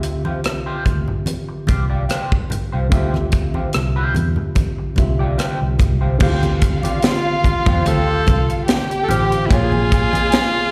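Lush 1970s-style soul with a bittersweet, silky mood, this short excerpt opens on a tight funk drum kit up front, a dark, foam-muted fingered bass, a worn, slightly out-of-tune tine electric piano with light overdrive and slapback echo, and a twangy electric guitar riff at the edge of break-up, colored by wah and warbly pitch drift, with low-tuned congas joining in the background a moment later. At 6.2 seconds a studio string section enters with vibrato and portamento, and at 7.1 seconds a breathy, intimate tenor saxophone takes the melody with scooped notes and a soft attack. The sound is of a live gig heard through the venue's PA, with a recital hall reverb.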